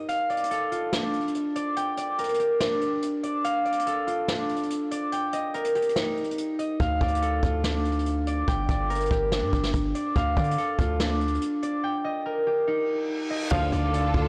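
A bright, fingerpicked concert harp rings up front through this menacing, melancholic trap excerpt, its arpeggios softened by a low-pass filter and tape echo as it moves through Dm, Gm and Eb in D phrygian at 143 BPM with a half-time feel. Beside it, a jazz brush drum kit sits distant and roomy, with a boomy kick, dark cymbals and a medium-tuned snare roughened by vintage 12-bit sampler grit. A punchy, heavy 808-style bass enters at 6.8 seconds, its sine tone and noise layer hitting fast and decaying. A reverse cymbal begins at 12.9 seconds and leads into an electronic impact at 13.5 seconds, where the arrangement briefly fills out with warbling, detuned lo-fi synth keys, lush bowed strings in the background, a very quiet, soft round pluck and short, clear brass stabs. The whole recording sounds blown-out and overdriven, set in light reverb and small room ambience.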